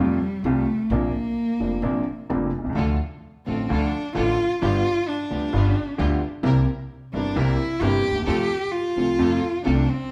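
Recorded live in one room with a large, moderately reverberant studio sound, this passionate, dramatic tango excerpt at 130 BPM moves with a rubato feel as a close, bowed cello sings an expressive solo rich in vibrato and portamento over a polished, woody upright piano and a bright pizzicato upright bass on steel strings, while a lush studio string section adds smooth-topped bowed stabs from 2.8 seconds.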